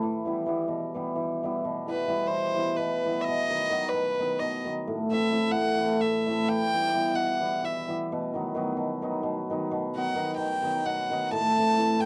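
A brisk 7/8 metre drives this Balkan folk excerpt at 260 BPM in eighth notes with a straight feel. Its restless, bittersweet mood sits in B phrygian dominant, tuned to A4 = 443 Hz. An acoustic cimbalom opens alone, its mellow, hammered strings ringing and shimmering up front as it lays down the accompaniment, circling through Em, B and Am. At 1.9 seconds a single violin enters with the solo melody, its reedy, nasal, gut-string tone and airy bow giving it a period character close to the listener. The dry, close 1970s-style studio sound places both instruments up front within a moderate booth ambience, and the fragment runs to 12.1 seconds as part of a longer piece.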